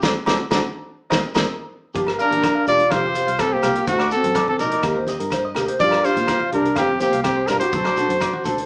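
Danceable and warm, this short excerpt of a highlife guitar band in G minor at 125 BPM opens on a full band accent capped by a drum fill from the roomy, tight-kicked soul kit. A twangy, compressed clean electric guitar arpeggiates over background fingerpicked steel-string acoustic guitar, a round foam-muted fingered bass, ringing agogo bells, very quiet low-tuned congas and a grainy shekere, and at 2.2 seconds a clear, forceful trumpet melody and a dark, scooping alto saxophone line enter together, all captured live in one room with a small-speaker sound.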